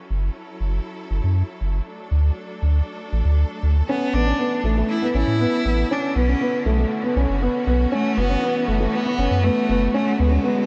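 A felt-muted upright piano plays a soft, mellow riff with short sustain and a touch of delay, entering up front at 3.9 seconds alongside a solo bowed cello that carries a clear, focused melody with vibrato. Underneath, a round, deep sine sub bass holds the low end from the start, while a bowed studio string section sustains chords throughout and fades in over the whole passage, moving from F#m7 through D, Asus2 and Bmadd9. This moving, intimate piano-and-strings electronica cut from a longer piece has a dark production and a light, small-room reverb.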